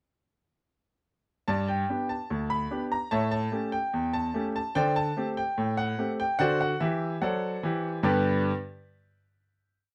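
Lively and cheerful, this short ragtime piano piece moves at 73 BPM in 2/4 with a straight feel, set in G major. A clear baby grand piano plays solo from 1.5 to 8.5 seconds, carrying a tune over chords with a stride bass, ranging from D2 up to B5. The instrument sits up front with an intimate, natural character and long sustain, and the clatter of its action can be heard beneath the notes. The harmony travels from G through A7, D7sus4 and D7 before landing on a closing G chord at 8.0 seconds that rings on until 9.7 seconds. A moderate studio ambience gives the piano a touch of room around it, keeping the whole brief piece clear and close.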